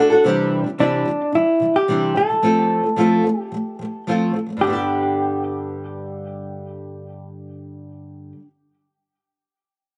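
Set in a moderate studio room with a softened top end, this short cut from a longer acoustic pop piece has an easy-going, sunny mood at 110 BPM in G major. A double-tracked, fingerpicked nylon-string guitar sits up front with a small, warm tone and plate reverb, moving through Cadd9 and F before landing on G at 4.6 seconds. From 0.8 seconds a clean, compressed hollow-body jazz guitar carries the melody with a dark, fingered tone, also up front and coloured by plate reverb and delay.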